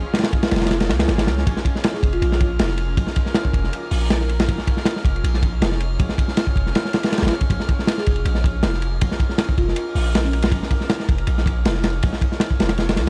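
Drum and bass with a jungle edge, this dark, frenetic excerpt runs at 159 BPM in Bb minor, resting on a single Bbm7 chord and driven by a crunchy, saturated breakbeat kit with a punchy kick and dark cymbals, up front beside a deep, sine-toned 808-style bass. Behind them sit a blurred, granular cloud pad, a glassy texture of drifting overtones with chorus, and a barely audible electronic swell between 0.7 and 1.5 seconds. A woody, buzzing marimba played with soft mallets adds brief phrases with dub echo, most notably from 8.0 to 10.5 seconds, all within a gritty cassette-tape sound and small room reverb.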